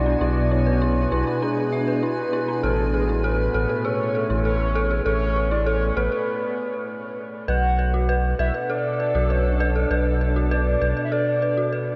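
A round, deep sub bass sits up front in this cerebral, intricate IDM excerpt, its sine tone thickened by tube saturation until it drops out at 10.9 seconds. Above it, a glassy FM pad holds ethereal sustained chords with a slow attack and long release, shimmering through ensemble chorus and its own reverb. A warbling, nostalgic lead carries the melody with a mellow blend of triangle, sawtooth and square waves over a sub octave, colored by vibrato, chorus and delay. A dark, detuned synth bell spins eerie, inharmonic arpeggios with a vintage FM character, each note decaying into chorus and tape echo. The harmony moves from E13/B to Amaj9, then after a brief break settles on Bm7 as a new section opens at 7.5 seconds. The dreamy mix is soaked in a huge ambient reverb with an 8.8-second tail.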